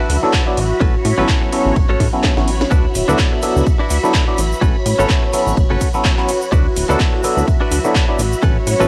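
Joyful and sunny, this short filtered disco house cut at 126 BPM swings lightly on 16ths as lush, phased string-machine chords and a twangy, direct clean guitar riff pump over a punchy, tube-saturated analog bass, a stringy clav through a combo amp, a tape-warm house kit with cracking snare and metallic hats, a punchy up-front electronic kick and a close, dry tube shaker entering at 2.7 seconds after a drum fill, all moving between D69 and A69 with the dusty charm of a home cassette recording.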